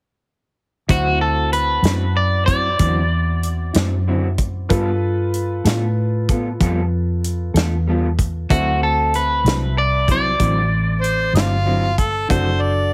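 Slow blues in 12/8 at 63 BPM, rollicking and gritty, in D mixolydian moving from D9 to G9 and back to D9, with a twangy, slightly broken-up electric guitar carrying the melody through spring reverb over a dark, fingered second guitar pulsing with harmonic tremolo and a boxy grand piano whose action noise is audible. A round, foam-muted electric bass and a punchy, small-room country drum kit of kick, snare and hi-hat sit up front, and at 11.0 seconds a clear harmonica with scooped notes and light vibrato enters through overdrive and slapback echo. The whole excerpt carries a heavily compressed radio sound with light reverb.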